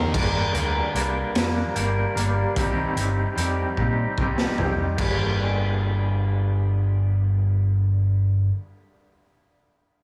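A lush hall reverb and big arena sound frame this angsty, cathartic quiet-loud alternative rock excerpt in G minor, moving slowly at 50 BPM in 6/8 as a twangy, slightly broken-up electric guitar through a small old amp plays tremolo-washed arpeggios with slapback and tape echo, an overdriven, bright fingered bass holds the low end, and a gritty, dark-cymbaled garage drum kit plays from a pumping small room until its fill from 3.8 to 5.0 seconds, after which guitar and bass carry on from Cm back to Gm.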